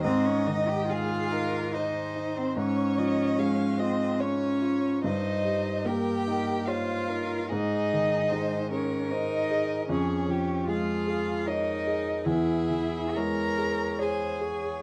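A dark, warm studio sound with moderate reverb frames this serene, rubato passage of a slow romantic movement for piano quartet in triple time, cut from a longer piece. An up-front, polished grand piano with long sustain carries the accompaniment, while a rich, expressive cello with soft attack and portamento sits close alongside it. A more distant second violin adds a smooth inner line, and a focused first violin with vibrato sings the melody from 0.1 s, as the harmony drifts to a darker minor-tinged chord at 12.3 s.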